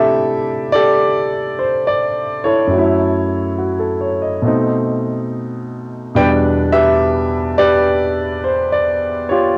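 A soft cassette haze hangs over this home recording, with a moderate spring reverb and the ambience of a small room around the instrument. It is a relaxed, unhurried stretch of solo jazz, cut from a longer piece and lasting just under ten seconds. A concert grand piano carries everything alone, sitting up front with a natural tone and a deep bass reaching down to E2 and up to G5. The playing swings gently in 4/4, drifting through rich harmonies: a C69 opening, then F#m7 at 2.7 seconds, B7b9, and Em7. The overall mood is relaxed and warm.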